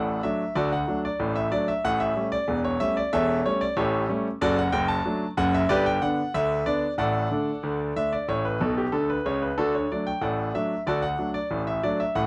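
A bright, brilliant grand piano plays solo ragtime in D major at 93 BPM in a straight 2/4, lively and playful across its span from E1 to A5, sounding intimate and up front with audible action noise and long sustain in a dry, close 1970s-style studio recording, moving through D, A7/E, D/F#, G, D/A and A before a fill from 8.6 to 9.6 seconds lands back on D in this 12.3-second excerpt cut from a longer piece.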